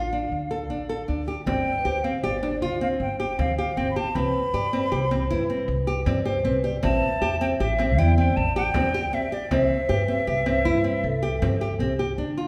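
A hollow, airy concert flute with vibrato and a crisp attack carries the melody from 0.0 s to 11.8 s in this urgent, pensive piece of contemporary chamber music in 7/4 at 157 BPM, over small, fingerpicked nylon-string guitar arpeggios and a woody, dark pizzicato upright bass, both up front, while a ringing, metallic vibraphone with medium mallets and its motor off adds a second line and a deep frame drum sits in the background from 1.5 s, as the harmony moves from Dm through G7sus4 and Am7 to Cmaj7 inside a wet recital hall reverb.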